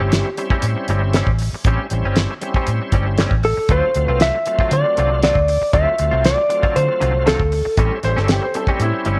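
A straight-eighth soul blues groove at 118 BPM sets a swaggering, soulful mood as a dry, damped 70s drum kit with a fat snare and tight kick sits up front beside a dark, round, foam-muted fingered electric bass, while a dark, compressed clean lap steel guitar played with fingerpicks and slide carries the melody over A7#9 and D7#9 chords, a shouting, lightly overdriven tonewheel organ with key click, chorus vibrato and slow rotary speaker fills the accompaniment, a twangy, direct-recorded clean electric guitar adds stabs with tremolo, and a woody, polished upright piano slips in a second line at 8.0 s, all within light reverb and small room ambience in this short cut from a longer piece.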